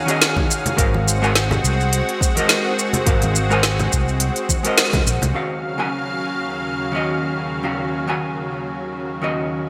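Sunset chillout with a relaxed, smooth mood and a gentle sixteenth-note swing, cut from a longer piece. A lush, detuned unison pad holds sustained chords throughout, its slow attack and chorus giving it a thick, glowing presence up front, while a dark, clean hollow-body jazz guitar picks an accompaniment alongside it through a digital delay. The groove comes from a deep house kit with a woody snare, smooth filtered hi-hats and shaker under gated reverb, a deep layered electronic kick, and soft-handed congas ringing quietly in the background. A round, punchy fretless electric bass sits up front in the low register, entering at 0.8 seconds with the move from Ebm11 to Ab13 harmony. A band accent lands at 4.8 seconds, the kick drops out at 5.0 seconds, and around 5.3 seconds the rest of the drums, the congas and the bass fall away, leaving pad and guitar to settle onto an Ebm9 chord. The sound is bright, 1980s-style digital production in a moderately lush hall reverb.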